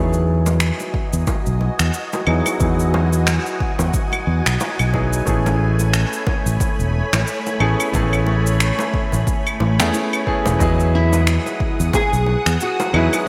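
A relaxed, swung groove of a punchy, layered electronic kick, tape-warm electronic cabasa, finger snaps and claves with gated reverb, and round, low-tuned bongos in the background drives this sunset chillout excerpt, anchored by an up-front fingered electric bass. A brilliant grand piano with audible action noise and long sustain plays the accompaniment through a filter sweep and digital delay, while a silky, vintage string machine holds slow-attack ensemble chords over Emaj9 and Amaj9. At 10.9 seconds a dark, small-sounding fingerpicked nylon-string guitar enters with the melody, steeped in lush chorus and delay, inside a bright 1980s-style digital production with moderate hall reverb.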